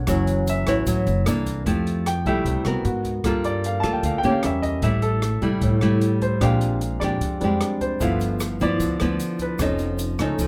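A clear, up-front baby grand piano solos over fingerpicked nylon-string guitar with old strings and woody pizzicato upright bass in this breezy, relaxed bossa nova at 151 BPM in F major, while an open jazz kit with a boomy kick, hi-hat and rim click sits in a studio room, a grainy, distant egg shaker surfaces in the background from 0.1 to 1.7 seconds and again from 8.0 seconds, and light reverb colours a fragment whose rich chords run from F#m7 through Fmaj9 and Bb13 to a closing Faug7.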